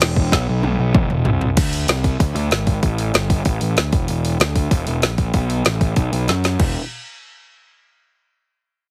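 A dry, heavily compressed radio sound frames this aggressive, urgent punk rock excerpt at 191 BPM, where an up-front overdriven fuzz picked electric bass growls between E1 and F#2 against an electronic, layered deep house drum kit with a deep kick, woody snare, dark hats, crash and toms, both parts playing from 0.0 to 6.7 seconds and the drums firing fills from 0.3 to 1.6 seconds and again from 6.3 to 6.6 seconds.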